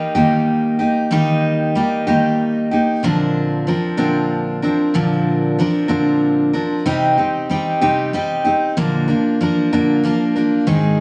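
Set in a lilting 6/8 at 63 beats per minute, counted in dotted quarters with a straight feel, this short rock fragment moves at an unhurried, wistful pace. A lone picked steel-string acoustic guitar carries the whole piece, sitting up front with a warm, full-bodied, jumbo-sized tone and the occasional finger squeak that adds a dusty, lived-in character. The opening passage rests on Eb before shifting to Bbadd9 at 3.0 seconds, and a new section arrives at 6.9 seconds, turning to C minor and then settling on Bb. The guitar ranges from Ab2 up to Bb4, filling out both its low and middle registers. A moderate echo-chamber reverb with a long 2.1-second tail, blended with a small room ambience, gives the instrument a faintly nostalgic, hazy glow.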